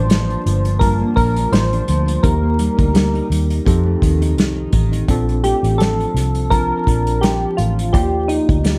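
Vinyl crackle and a light reverb give this short cut from a longer piece a hazy, nostalgic sound. It is indie bedroom pop in Bb major at 84 BPM in 4/4, with a gentle 16th-note swing and tuning that sits slightly under standard pitch. Soft, round synth keys with a detuned, chorused tone carry the melody up front, treated with plate reverb and tape echo. A mellow tine electric piano heard through its built-in speakers adds clean accompaniment, and a dark, fingerpicked nylon-string guitar with audible finger squeak wavers through chorus and warbly pitch drift. A foam-muted vintage electric bass sits punchy and up front, and an unplugged kit played with bundle sticks joins at 0.1 s with a punchy kick, medium-tuned snare and hi-hat in a small room. The harmony moves from Gm7 through Eb and F7 before shifting at 5.1 s to Bbmaj7, then settles on Ebmaj9 at 7.9 s.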